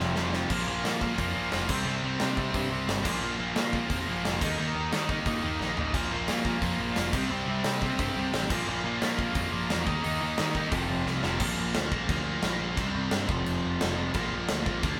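Captured as a band playing live in one room with moderate studio reverb, this rowdy, rebellious punk rock cut from a longer piece charges at 176 BPM through F5, Bb5, C5 and Eb5 chords, driven by a dark, sludgy overdriven guitar riff, two bright picked guitars in the background (one overdriven, the other double-tracked and distorted until it stops at 11.4 seconds), a growling overdriven bass heard direct and amped, and an up-front big-room acoustic kit with punchy kick, medium-tuned snare, gleaming cymbals and several fills.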